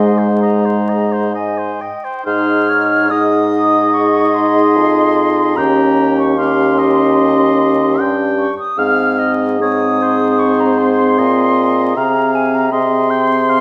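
A hollow, pure concert flute sings the melody with vibrato over a light-vibrato oboe second line, smooth-topped French horn and clarinet accompaniment, and a mellow bassoon bass in this serene, rubato excerpt from a slow romantic wind quintet movement, set in a dark, warm recital hall with vinyl crackle.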